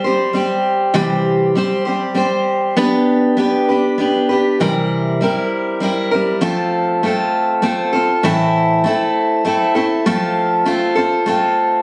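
A picked steel-string acoustic guitar plays alone and up front from the first second, its warm, auditorium-sized body ringing through light reverb in this hopeful, open-road rock piece in 3/4 at 99 BPM in C major. The opening passage moves from C through G/B to C7, and at 6.4 seconds a new section turns to F and A minor before settling back on F, all captured with a phone-in-the-room closeness wrapped in a touch of studio reverb.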